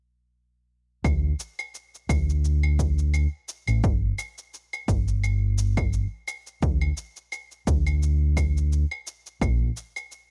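The punchy electronic kick drum is overdriven and layered, sitting up front with a produced, electronic bite. This is a smooth, wistful sunset chillout excerpt at 86 BPM in 4/4, with a light 55% swing on the sixteenths and a slightly sharp tuning of A4 = 441 Hz. A fingered electric bass shares the foreground, dark and round with an amped tone, moving between G1 and D2. Claves and shaker sit further back, sounding sampler-style and compressed, gritty yet tape-tinged at their natural pitch. All three parts come in at 1.0 seconds; the kick drops out around 9.6 seconds and the bass around 9.7 seconds, while the claves and shaker carry through to about 10.3 seconds, all in a dry sound with little reverb.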